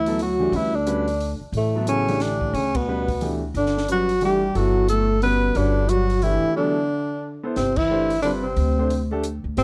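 A breathy, subtone tenor saxophone with vibrato and scooped notes carries the melody up front in this hypnotic, open modal jazz waltz cut from a longer piece, swinging in 3/4 over a dark trombone second line, a woody, thumpy pizzicato upright bass on gut strings, a warm concert grand piano comping with deep bass, and a dry cocktail drum kit with a high-tuned snare and punchy kick, the band hitting accents at 2.7 and 7.7 seconds around a break from 6.6 seconds in a dark, warm, lightly reverberant mix.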